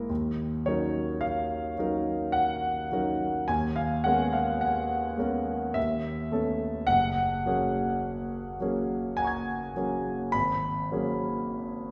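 A wet scoring-stage reverb with a 1.7-second decay surrounds this recording, which is heard from further back in the room and gives the sound a hazy, luminous glow. This is a short cut from a longer classical piece, an impressionist work for solo concert grand piano in G-flat major, moving at a slow 52 BPM in 3/4 with a free, rubato feel. The piano plays alone from 0.0 to 11.9 seconds, ranging from a deep Gb1 in the bass up to Ab6. Its tone is warm, intimate and natural, placed up front, with the mechanical noise of the action clearly audible. The harmony drifts through rich extended chords, opening on Ebm9 and passing through Abm11/Eb, Aadd9/Eb and Gbadd9 before arriving at Abm11 at 10.3 seconds.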